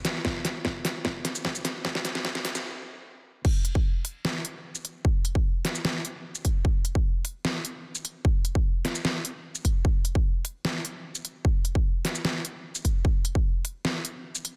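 A dubstep drum kit opens with a fill over a build-up, its crisp hats, shaker and deep snare pressed up front, and an electronic kick drum joins almost at once. The fill breaks off at 2.6 seconds into a brief stop before the drop lands at 3.4 seconds. From there the 150 BPM groove settles into a half-time feel in 4/4, with the punchy, layered kick and crash cymbal driving an aggressive, menacing mood. Both drum parts carry a produced, tape-warm character. A light reverb and a high-pass filter frame the sound, and the dense, heavily limited modern master makes this short cut from a longer track hit hard.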